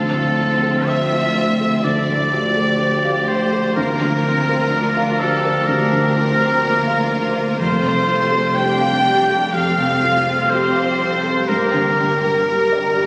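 A sorrowful, bittersweet cinematic orchestral cue opens at once with a clear oboe up front, singing a second line over a hushed violin section melody and a lush second violin line, as a felt-muted upright piano with audible action noise, violas with expressive portamento, dark French horns holding sustained chords, very quiet cellos and background double basses fill out the rubato texture, all washed in cavernous church reverb with the roomy feel of a phone recording.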